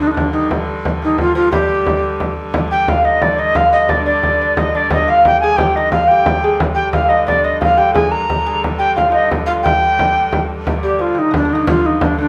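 Medieval dance in a straight 6/8 at 118 BPM with a mysterious, ancient mood, cut from a longer piece, where a mellow, up-front tenor recorder carries the melody with a woody vibrato and soft attack over a delicate, fingerpicked gut-string lute second line, a quieter nasal, earthy hurdy-gurdy drone beneath, and a deep, dry frame drum played with soft hands entering at 0.2 s, the band playing live together in a large, wet-sounding studio room.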